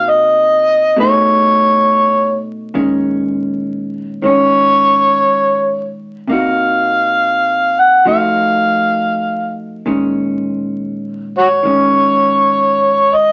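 A gritty, overdriven harmonica carries the melody up front with light vibrato, tongue slaps and scooped notes over a dark, clean, picked hollow-body electric jazz guitar in this smoky, intimate swung jazz ballad fragment, set in a moderate studio reverb with vinyl crackle as chords such as Cm7b5, F7b9 and Bbm7 pass by.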